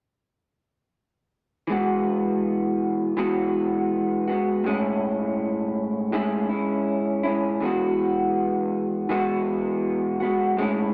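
An up-front electric guitar through a small old amp plays alone from 1.7 to 10.9 seconds in this cut from a longer indie pop piece, its fingered, slightly broken-up, lo-fi tone dressed in subtle chorus, vibrato and slapback echo. At 81 BPM in 4/4 with a light sixteenth-note swing, the mood is dreamy and sunny as the guitar moves from Eadd9 to Amaj7 and back in E major. The dark, warm production places the compressed guitar in a small room with moderate reverb.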